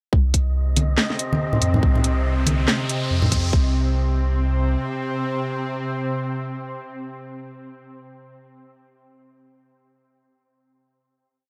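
A dry, gritty recording with transformer saturation frames this short, heavy and brooding deep dubstep piece, set on a swung half-time groove over a single minor chord. A tight electronic kick, a garage kit with cracking snare and closed hats, hard-handed echoing congas and a round, soft dub sub bass drive the build-up, while an airy, breathy noise texture holds a high note in the background and an electronic riser enters at 1.3 seconds. At 3.5 seconds the drums and percussion stop, the sub bass lingers briefly, and a nasal, string-like sawtooth drone with vibrato and its own reverb sustains the final note until 7.2 seconds.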